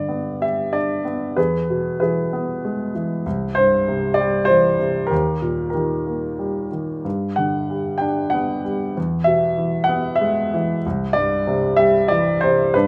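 Warm and relaxed, this short cut from a longer classical piece features a lyrical solo grand piano in 3/4 at 95 BPM, played with a rubato feel and tuned to A4 = 445 Hz. The piano sits up front with a natural, warm tone, ranging from C2 to G5 over 12.9 seconds. Its harmony moves through G, E, C and E-flat before circling back through G, E and C, all framed by light reverb.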